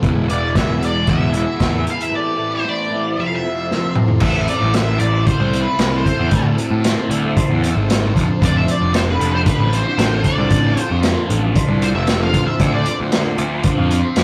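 A rough rehearsal-room sound with saturated grit and moderate reverb frames this trippy, mysterious psychedelic rock excerpt at 115 BPM in straight 4/4, cut from a longer piece. Up front, a punchy vintage drum kit with dark cymbals and an overdriven fuzz bass carry the groove. In the background sit a thick, double-tracked fuzz guitar riff with phaser and a warbling, chorused organ-string pad of sustained chords, moving from E through Amadd9 and Fmaj7 to Am, F6 and Dm7. A distorted octave-fuzz lead guitar with wah enters at 0.3 seconds, and after a drum fill at 3.7 seconds it takes a solo from 4.2 seconds until it stops at 13.0 seconds.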